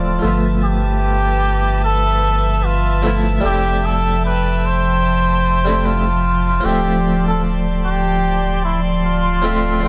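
A light reverb and studio ambience frame this dark, hypnotic trip hop fragment, lifted from a longer piece and moving with a lazy swung feel. Up front, a cup-muted trumpet carries the melody in a veiled, jazz-style solo voice with gentle vibrato and a soft attack, trailed by tape echo. Beneath it, a bright Italian-style harpsichord plays accompaniment through tremolo, gritty 12-bit sampler texture, a low-pass filter that sweeps across the whole 9.9 seconds, and its own tape echo. A distant, reedy string section holds sustained, bowed chords with a gut-string, period tone and light vibrato, also roughened by sampler grit. Anchoring the bottom, a deep, round dub sub bass sits forward with tube saturation as the harmony drifts from G13 to Fmaj9 and settles on Dm7.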